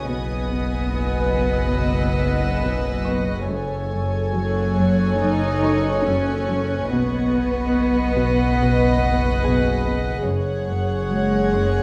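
A slow, straight 4/4 pulse at 71 BPM sets up this mysterious, eerie cinematic cue, cut from a longer piece and cast in a dark, warm production on a scoring stage with moderate reverb. Violin sections bowed sul tasto carry the melody and a second line with soft attacks, one pure and floating, the other intimate with light vibrato, while a rich viola section fills the middle and a higher symphonic violin section adds a floating texture. Beneath them, a cello section and a double bass section hold the bass, and a second cello section plays a background riff from 0.1 seconds. A tense, string-like synth drone on F#1, with a slow attack, ring modulation, a noise layer and its own reverb, sustains underneath, and a mellow, ringing concert harp is fingerpicked in the background. The harmony moves slowly through B/F#, F#madd9 and back to B/F# before settling on F#sus2 at 10.3 seconds.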